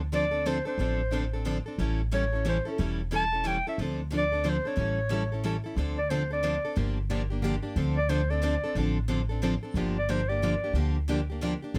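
A swinging 3/4 lilt at 181 BPM drives this short cut from a longer piece of acoustic gypsy jazz in D minor, bittersweet yet fiery, with a woody, thumpy pizzicato upright bass on gut strings anchoring the low end as chords move between Dm7, A7 and Gm7. A breathy clarinet carries the melody up front, dark and smooth-topped, with vibrato, subtone and scooped notes, and takes a solo from 5.8 seconds. Two picked steel-string acoustic guitars accompany: a plugged-in concert guitar sits warm and forward, while a bright, boxy parlour guitar with fresh strings and audible finger squeak sits further back, all captured with close, detailed microphones and light reverb.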